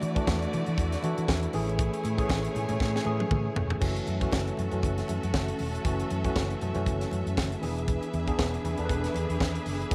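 Sultry and danceable, this disco groove rides a light 16th-note swing from a tight funk drum kit, with a high-tuned snare and tight kick up front, and a fingered electric bass that sounds amped and warm. A worn, slightly out-of-tune tine electric piano plays a mellow accompaniment through its built-in speakers, while a rich, focused string section holds bowed chords with vibrato and very quiet, damped, low-tuned congas sit beneath. A drum fill at 2.8 s leads into a new section at 3.8 s, as the harmony moves from E9sus4 and Amaj7 to F#m7 and E7, all set in moderate spring reverb and small room ambience.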